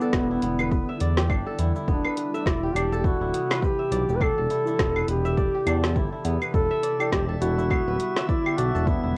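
A punchy electronic kick and a deep house kit with woody snare, dark hats, cabasa and claves set a swung 16th-note groove at 103 BPM in 4/4 for this mystical, organic downtempo excerpt, while a smooth, nasal synth bass with sidechain pumping sits up front. A mellow, close-miked duduk carries the folk-style melody with vibrato and scooped notes over crisp, ringing kora arpeggios, a very quiet ethereal pad and muted, felt-like synth keys, with the harmony moving from G6/9 to C to Em7. The keys stop at 7.1 s as a faint, glassy texture of drifting overtones enters, and the duduk and kora are coloured by cassette tape, analog delay and plate reverb within the moderate booth ambience of a home cassette recording.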